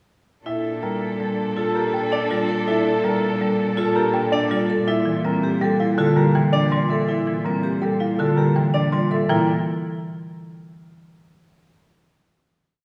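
Ringing vibraphone arpeggios and a clear grand piano melody with long sustain open the piece, and hard-mallet marimba, woody and dry, enters up front at 0.8 s with a bright repeated short cell, followed by a worn, bell-like celesta that enters at 1.9 s slightly out of tune in the background. This hypnotic, propulsive minimalist pattern piece moves at 163 BPM in 6/4 in Bb lydian, over smooth long bass notes from a distant solo cello. A mellow clarinet line and a rich string section with soft-attack swelling chords drop out at 4.7 s, and the whole piece settles on a final Edim/Bb chord at 9.3 s in a lush scoring-stage reverb.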